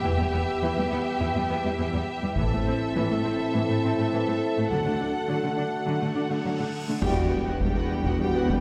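A heroic, relentless cinematic orchestral cue opens on intense, distant violins carrying the melody over a smooth chamber violin second line, focused violas, lush cellos and background double basses, with dark, vintage-toned French horns holding sustained chords. Heavy-stick taiko drums with a compressed, saturated punch strike at 2.4 seconds, and a huge, bright cymbal swell from 6.1 seconds leads into a band accent and impact at 7.0 seconds, where a mellow tuba joins the bass and the drums return. The whole ensemble sits back in a wet scoring-stage reverb as this fragment of a longer piece builds to its climax.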